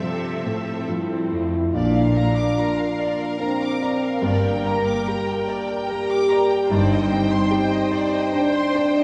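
Longing and sorrowful, this cinematic fragment in Bb major moves at a rubato 73 BPM in 3/4, cut from a longer piece and set far back in a wet scoring-stage reverb. A clear concert grand piano with long sustain, a lush viola section and a bright, ringing concert harp playing arpeggios all sound from the start, while a distant violin section carries the melody in the background and a focused cello section holds the bass until 7.4 s. A dark French horn section enters at 0.9 s with sustained chords up front, lightly vibrato and roomy, and an expressive double bass section joins underneath from 1.7 s. At 1.8 s a second violin line enters above the melody, smooth and even, as the harmony settles onto Bb before turning to Gm and closing on Cmadd9/G. The bowed strings all carry vibrato, and the horns' dark weight against the harp's glint gives the passage its aching, filmic breadth.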